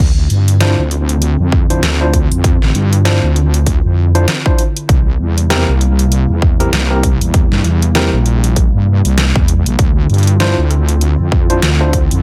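A nostalgic, lo-fi pad warbles in the background under a heavy, detuned wobble bass that sits saturated and up front from the start of this funky, playful glitch hop excerpt, moving from Dm9 to C7 at 4.9 seconds and back. A dubstep kit with a deep, overdriven snare, rim clicks and hi-hats joins almost at once, with bright, clean electric piano stabs carrying 12-bit grit, dub echo and sidechain pumping. A punchy electronic kick lands up front at 1.5 seconds, driving a swung groove in a digital ambience.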